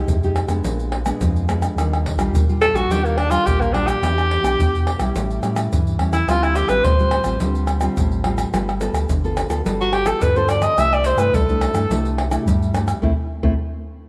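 A straight 4/4 groove at 107 BPM drives this joyful, lively blend of samba and choro in C major, carried by tube shaker, a tight surdo, pandeiro and tamborim played with hard hands in a small acoustic room and placed up front. Beneath it, a pure sine sub bass sits deep, clean and dark, with a fast attack and sustained notes, while a fingerpicked nylon-string guitar adds warm classical accompaniment from the start. At 2.6 seconds a clear alto saxophone enters with a jazz-style solo, its vibrato and slapback echo giving it a distant, roomy quality even as it stays up front, before it drops out at 12.2 seconds. The harmony moves from Fm9, Bb7b9 and Ebmaj9 through Em7, A7, Dm7 and G9 to settle on C69, and the band lands a shared accent at 13.0 seconds. Light reverb gives the whole a small-room ambience in this short fragment cut from a longer piece.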